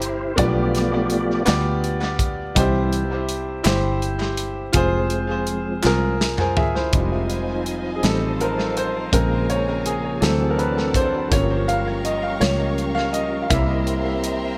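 Fervent and soulful, this slow gospel passage in 6/8 at 55 BPM opens with a clean tonewheel organ solo through a slow rotary speaker and chorus vibrato, over a clear, boxy grand piano with tape echo, a round, foam-muted fingered electric bass and an up-front acoustic drum kit with a punchy kick, rolled-off top and tape echo, joined at 1.5 s by very quiet, distant group handclaps, until a drum fill at 5.8 s leads into the piano's solo at 6.9 s as a lush, bowed string section with expressive vibrato enters quietly in an echo-heavy mix with light studio reverb.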